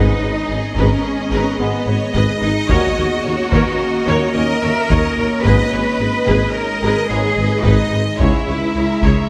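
Relentless and vast, this short cut from a longer hybrid orchestral and electronic film score moves in a straight 5/4 over a dark minor progression, with a close taiko ensemble struck with hard sticks entering at 0.8 seconds. An up-front cello section, a double bass section and a mellow tuba anchor the low end, while a dark viola section and two lush, vibrato-rich violin lines, the melody set in the background, sing above distant, very quiet French horns and trombones that hold sustained chords until 8.4 seconds. A glassy, ethereal FM pad with ensemble chorus and its own reverb hovers behind it all, and a moderate scoring-stage reverb gives the whole a roomy depth.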